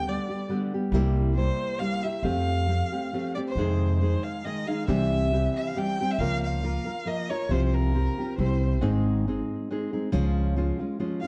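A lilting 3/4 swing with rubato carries this romantic, proud mariachi fragment, where a distant, expressive solo violin with vibrato and portamento leads until 8.7 s over an up-front, full-bodied fingerpicked nylon-string guitar and a woody, thumpy pizzicato upright bass on gut strings, the music turning from major to minor at 3.6 s inside a moderate recital-hall reverb.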